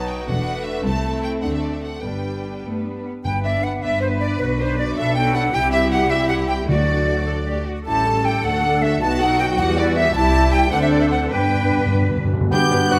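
A lively, cheerful classical-period orchestral movement in 6/8 and G major opens on the full string body: an intense, clear violin section carrying the melody over a background second-violin line, smooth violas, a lush, focused cello section and up-front double basses, all bowed with vibrato and moving at 104 BPM with a rubato feel. At 3.2 s an airy silver flute joins with an expressive second line, mellow French horns sustain chords behind it, and round soft-mallet timpani punctuate the passage, with a timpani fill from 11.3 s. In the final moments, from 12.5 s, a distant oboe, a soft-attack clarinet, a bassoon and clear trumpet stabs arrive, all set in a moderate scoring-stage reverb.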